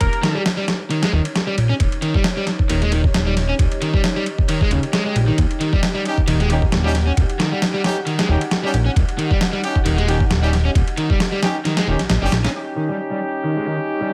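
Breakbeat with a swaggering, energetic swing opens on a dusty, sampler-style drum kit, overdriven and gritty with a thumpy kick, alongside a fat, wave-folded analog bass and a dark pad pumping in the background over an Eb7 chord, while a plucky unison lead flashes a single note through AM-radio and cassette coloring in the first 0.5 seconds. A crunchy overdriven guitar riff enters at 0.2 seconds with tube saturation and dub echo, and a bright, close-miked jazz-style horn section adds stabs from 6.1 seconds. As the drums and bass stop at 12.5 seconds, a filter sweep washes over the horns while the guitar and moody pad carry this cut from a longer piece to its close.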